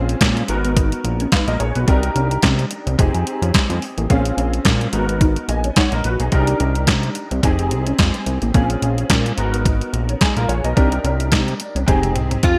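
A detuned 8-bit digital drum machine sits up front in this danceable, funky early-eighties boogie funk piece, its thumpy kick, medium-tuned snare, hi-hat, handclaps and toms pushed through overdrive and gated reverb, closing with a drum fill from 11.9 seconds. Beneath it, a fat analog bass with a sawtooth, detuned tone and a plucky filter attack holds the low end, sustained and just as forward in the mix. A clear baby grand piano with audible action noise and an intimate, natural character supplies accompaniment through an ensemble chorus, while a dark, clean, fingered electric guitar riff sits very quietly underneath. The groove moves at 108 BPM in 4/4 with a light sixteenth-note swing, cycling through Abm9, Cm9, Fm9 and Bbm9 chords. At 12.4 seconds a metallic, nasal lap resonator guitar played with fingerpicks and slide enters up front as this cut from a longer piece ends, all set in light reverb and bright 1980s-style digital production.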